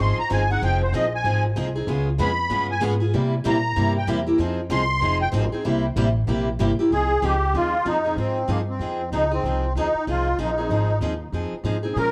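Heard through worn, warbling cassette tape with a warbly pitch drift and a moderate club reverb, this short cut from a longer piece is acoustic string swing in the jazz manouche style, swinging and virtuosic at 191 BPM in F minor. A reedy, shimmering musette accordion carries the melody up front, bathed in plate reverb, and takes a solo over the opening section up to 6.9 seconds. Beneath it, a bright, boxy steel-string guitar with a parlour character and audible finger squeak picks out the accompaniment throughout. A second picked swing-style guitar, also bright with fresh strings but set further back, plays alongside it from the start until 6.7 seconds. The pizzicato upright bass sits up front with a woody, growly tone from its steel strings, anchoring the changes through Fm7, Db7 and C7 before the second section arrives at 6.9 seconds.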